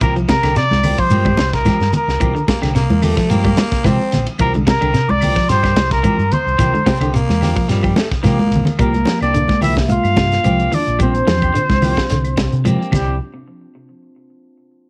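Afrobeat at 109 BPM in 4/4 with a light sixteenth-note swing, this funky, driving excerpt sits in C mixolydian over a C7sus4 groove, cut from a longer piece. A breathy, intimate trumpet with vibrato and a soft attack carries the melody up front, while a fingerpicked Celtic harp rings in the background as a second line, both colored by cassette tape. Underneath, a dark, round, punchy fingered bass pairs with a tight funk kit featuring a high-tuned snare, and congas with a bright, thin-skinned tone enter at 0.3 seconds to join a grainy shekere and very quiet woody claves. Two guitars sit further back: one at the edge of break-up plays twangy arpeggios through subtle chorus and analog delay, and a clean semi-hollow guitar adds hollow-body stabs. A raspy, gritty baritone saxophone joins as another second line from 2.5 to 8.7 seconds, and a drum fill marks the turn into a new section at 8.8 seconds. 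The whole track carries the small-room ambience of a home cassette recording, resolving to a plain C chord before the music drops out.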